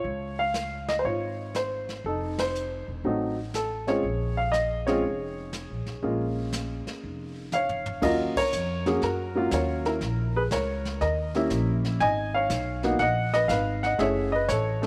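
Jazz piano trio fragment with a smoky, late-night mood, swinging at 120 BPM in 4/4, where an intimate, slightly detuned upright piano carries the melody up front with audible action noise and short sustain, a woody, thumpy pizzicato upright bass on gut strings holds the low end, and a brushed drum kit with dark cymbals and a boomy kick sits further back, playing a drum fill from 7.5 s that leads the shift from Bb minor to Eb minor at 8.0 s, while the whole band lands accents at 2.3 and 8.3 s, all in a small room with light reverb.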